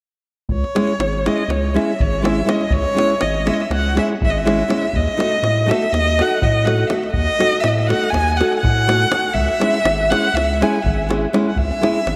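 A vast, echoing cathedral reverb surrounds this fiery, bittersweet slice of Balkan wedding-band folk, cut from a longer piece and moving at 244 BPM in eighths through a straight 9/8 in C# minor. A single bowed violin carries the melody between C#5 and G#5, its tone warm and expressive, with vibrato and portamento colouring each phrase as it sits up front. Beneath it, a saturated sub bass holds deep, thick, sustained sine tones from G#1 to A2, with a fast attack that gives it weight. A fingerpicked nylon-string guitar, bright with fresh strings and a classical touch, joins at 0.8 s to accompany in the G#3 to A4 range. A close, dry davul keeps the pulse from the background, while the harmony moves from C#m to D#dim at 4.9 s and returns to C#m at 9.3 s.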